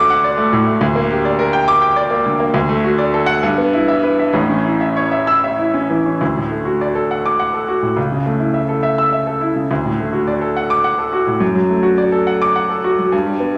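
Heroic and sparkling, this classical virtuoso piano study in 6/8 with flexible rubato features a clear, intimate solo grand piano placed up front with audible action noise, ranging from deep bass to bright upper notes inside a reverberant recital hall, shifting into a new section at 6.2 seconds before the fragment is cut from the longer piece at 13.6 seconds.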